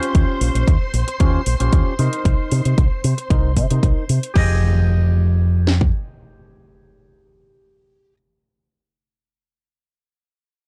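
Sleek and cosmic, this short nu-disco passage cut from a longer piece moves at 114 BPM in F minor, with a lush sawtooth string machine pumping under sustained chords until 4.4 seconds, a bright, picked clean electric guitar riff carrying a filter sweep, sampler grit and tape echo, a dark, round, up-front envelope-filtered fingered bass, a house kit of punchy kick, cracking snare and metallic hats, and an electronic impact arriving at 4.4 seconds as the chords move from Eb13 and Cm7 to Fm9, heard through a dry cassette-toned recording.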